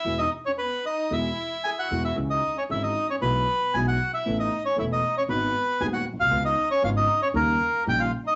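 A rubato 4/4 pulse around 116 BPM carries this playful, nostalgic tango in C# minor, with a band accent over the opening 2.2 seconds before the second section moves through C#m, Asus2, G#m7 and C#7 to close on D#7. The reedy, airy bandoneon leads up front, while a studio violin section plays a soft, floating second line sul tasto and a woody, vintage upright piano with short sustain fills the accompaniment. A thumpy pizzicato upright bass on gut strings anchors the low end, all set in a wet club reverb with a dark, rolled-off top.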